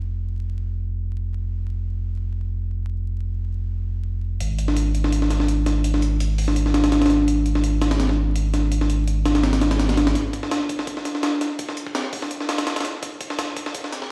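Set at 167 BPM in 4/4 with a 54% swing on the sixteenths, this atmospheric, nostalgic drum and bass and jungle piece in F minor opens on a deep, thick, saturated sub bass that sits prominently in the mix until 10.1 s. A gritty, pitched-up, compressed breakbeat kit with a thumpy kick, high-tuned snare and hi-hat enters up front at 4.4 s and carries a build-up from 10.2 s. A lush hall reverb and vinyl crackle surround the music, which sounds as if it is playing on a big sound system in a bare room.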